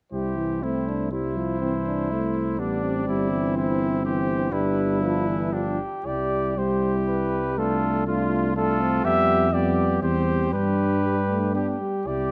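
In a rubato 3/4 at 121 BPM, this noble, triumphant classical brass quintet in C major unfolds as a fragment of a longer piece, with a second section arriving at 6.1 seconds. A mellow trumpet carries the melody with light vibrato while a clear trumpet sings a second line beneath it, supported by a present French horn with vibrato and a distant, roomy euphonium in warm accompaniment. A dark, punchy tuba anchors the bass up front, and close, detailed microphones with light reverb capture the ensemble.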